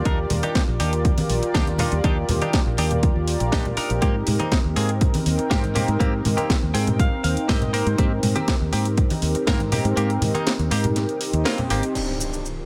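A straight groove at 121 BPM drives this feel-good, groovy nu-disco excerpt, anchored by a punchy, up-front electronic kick and a layered house kit with a cracking snare, hi-hat, shaker and crash, both carrying a tape-warm character and the air of a large room. Soft-handed, bright congas sit in the background, while a foam-muted fingered electric bass pumps with sidechain movement beneath a smooth, detuned analog pad that swells in slowly, sustains dark sawtooth-and-triangle tones with a sub octave, and carries chorus and dub echo. A twangy, picked clean guitar, compressed and treated with analog chorus, a low-pass filter and dub echo, plays the riff and adds a fill at 6.5 seconds. The harmony moves from Ebmaj7 to Abmaj9 and back, all under light reverb. The kick stops at 9.6 seconds, a band accent lands at 11.5 seconds, and an up-front electronic impact arrives at 12.0 seconds to close the passage.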